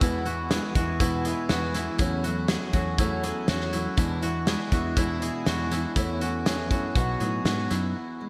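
A straight 4/4 pulse at 121 BPM from a loose, up-front indie drum kit with a tight kick and gated reverb drives this nostalgic, hopeful indie folk excerpt in E major, where a dark, round, foam-muted fingered electric bass sits beneath a fingerpicked steel-string acoustic guitar with audible finger squeak in the background, a boxy old ladder-braced acoustic guitar picked on old strings with subtle chorus, and koto arpeggios played with fingerpicks through digital delay, the whole arrangement set in a lush hall reverb with bright 1980s-style digital production as the chords move from E through E7 and A/E to B.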